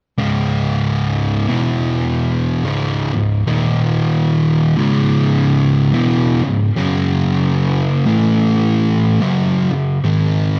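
A lone, double-tracked fuzz guitar opens at 0.2 seconds and carries this brooding, ominous metal excerpt in C# minor at a slow 73 BPM with a swung 4/4 feel, its picked, distorted tone sitting up front in a dark, warm mix with tape echo and light reverb as it moves through power chords from C#5 to F#5, A5 and G#5 until 10.6 seconds.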